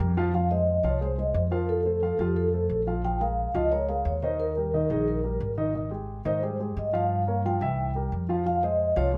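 Afro-Cuban jazz with a sultry, fiery mood, moving at a brisk pace in a straight four, heard here as a short cut from a longer piece. A dark baby grand piano and a pizzicato upright bass both sound from the very start, with the bass sitting up front, woody and growly on steel strings, while the piano comps in a mellow, intimate voice whose short sustain and audible action noise keep it close and natural. At 0.3 seconds a vibraphone played with soft mallets takes the melody, its metallic, ringing tone shaded by a fast motor vibrato yet smooth and dark overall. The harmony moves through minor seventh chords and a half-diminished turn to a dominant seventh before settling back on the home minor chord. A moderate studio reverb gives the trio a modest sense of space, and lossy compression artefacts colour the recording.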